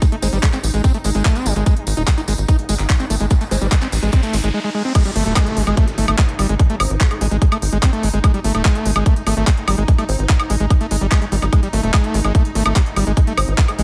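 This excerpt of psychedelic trance opens with everything arriving at once: a tight, up-front electronic kick at 146 BPM in straight 4/4, a squelchy, screaming acid riff with resonant filter sweeps, distortion and tape echo, and a detuned, morphing wavetable pad holding sustained chords in the background under its own chorus and reverb, the riff and pad both pumping against the kick. Alongside them, a garage kit adds crisp hi-hats, handclaps, woodblock and crash, and a jingly acoustic tambourine sits close behind until 4.5 s. Just after, a punchy, saturated sawtooth-and-square sequencer bass drives low in the mix's foreground. A nasal, formant-filtered wobble bass surfaces in brief vowel-sweep bursts through its cassette-tape haze, and an electronic riser builds from 2.5 s into a short break. The drop lands at 5.0 s and carries the hypnotic, alien groove onward, with a downlifter trailing off by 8.2 s. 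The kick and garage kit share a tape-softened, large-room character, and the whole track floats in a digital ambience.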